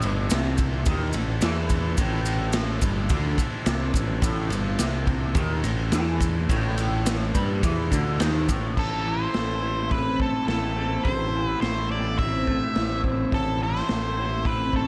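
Psychedelic rock with a mysterious, hypnotic pull, built on a slightly broken-up, lo-fi guitar riff doubled and swirled by phaser over a round, overdriven picked bass, a punchy raw garage drum kit with a smooth, rolled-off top, grainy maracas that drop out at 8.6 seconds, and a buzzy combo organ holding sustained chords in the background through spring reverb, before an octave-fuzz lead guitar enters up front at 8.8 seconds with a distorted melody trailed by analog delay, all sitting in a small room ambience on a single minor chord in a cut from a longer piece.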